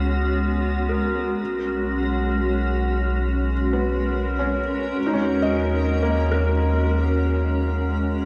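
This ambient excerpt moves at a slow 67 BPM in 4/4, with a reflective, melancholic mood. A granular cloud pad holds sustained chords from the start: its tone is cloudy, blurred and bright, with slow attacks, long releases and a built-in reverb plus shimmer that keep it evolving and up front. Beneath it, a round analog bass sits deep and mellow, with a fast, plucked filter attack that settles into sustained notes. At 0.9 s a felt-muted upright piano enters with soft, intimate arpeggios, its thin felt and audible action noise drifting through tape echo and shimmer reverb. The harmony touches C#5, B5 and D#m7, and the whole excerpt has the hazy, echo-heavy character of a cassette recording bathed in a wet spring reverb.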